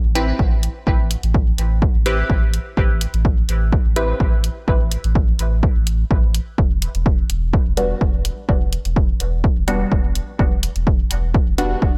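Dub techno with a cavernous, nocturnal mood, heard here as a short passage cut from a longer piece, moving in a lightly swung 4/4 over chords of Am7 and then Em7 from 6.6 seconds. A dry, punchy analog kick sits up front and carries the loudest weight, joined by a dry electronic hi-hat lower in the mix. Underneath, a soft sub bass with a round, deep triangle-and-square tone holds sustained notes in the lowest register, thickened by tube saturation and breathing with sidechain pumping. A muted, full-bodied chord stab built from detuned sawtooth with a filter pluck sits well back, colored by phaser, dub echo and sidechain pumping. The stabs sound from 0.2 to 4.3 seconds, drop out, and return at 7.8 seconds, leaving a gap where the rhythm section carries on. The room is nearly dry, keeping the low end tight and close.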